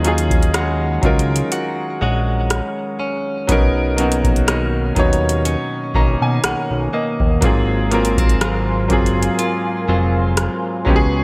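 A slow, lightly swung 4/4 groove from a booming analog drum machine, with deep kick, metallic hi-hats and rim clicks in gated reverb, sets a sensual, late-night contemporary R&B mood in this short excerpt. A fat, detuned sawtooth bass sits under a clear, slightly worn grand piano that carries the chords from Ebm11 through Bmaj9 to Ab13 and plays a fill at 5.5 seconds. Meanwhile a clean, compressed electric guitar, recorded direct, plays arpeggios through lush chorus and digital delay, and a mellow analog pad with chorus enters in the background at 7.4 seconds, all within a plate reverb and bright 1980s-style digital production.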